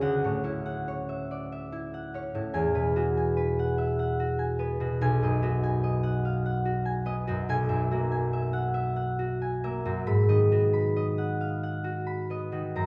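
A solo concert harp opens this graceful, peaceful classical fragment, cut from a longer piece, with fingerpicked strings that ring out on a Dmaj9 chord. The pace is slow and flexible, moving in a lilting 6/8 at roughly 42-50 BPM counted in dotted quarters, with rubato that lets each phrase breathe. Set in E major, the harmony drifts through Eadd9, B6 and F#9/B before settling on G#m7 at 10.1 seconds, while the harp spans a range from B1 up to B5. Its acoustic tone is warm and sits up front, even as the recital hall's generous reverb places the listener further back in the room. The ringing notes linger in that space, giving the short passage a soft, suspended calm.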